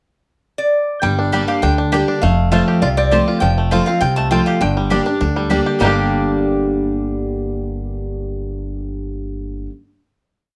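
A nasal, metallic lap resonator guitar opens the piece at 0.6 s, playing a motif-based slide melody with fingerpicks through plate reverb, while a full-bodied dreadnought acoustic guitar alternates bass and strum up front alongside a growly, woody upright bass thumping a two-beat root-and-fifth line from 1.0 s. This short, lonesome yet driving bluegrass piece in G minor moves at 201 BPM over Gm and F chords, with a twangy banjo rolling three-finger arpeggios and a double-strung mandolin chopping the off-beats. The resonator melody stops at 5.5 s, and the rest of the band lands on a final chord at 5.8 s, playing on until 9.7 s in a moderate studio room.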